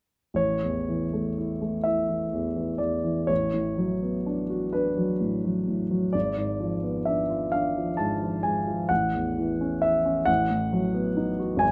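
Nostalgic and dreamy, this short excerpt from a romantic nocturne for solo piano drifts along in A major at a slow 39-46 BPM in 12/8, counted in dotted quarters and shaped by free rubato. A warm, up-front grand piano carries the whole passage alone, sounding from 0.3 to 11.7 seconds and spanning G#1 to A5. The harmony moves from A through Bm7/A and G#dim7 before returning to A and settling on B7/A. Light reverb gives the piano a soft halo, and the tuning sits slightly below standard at A4 = 437 Hz. The fragment is cut from a longer piece.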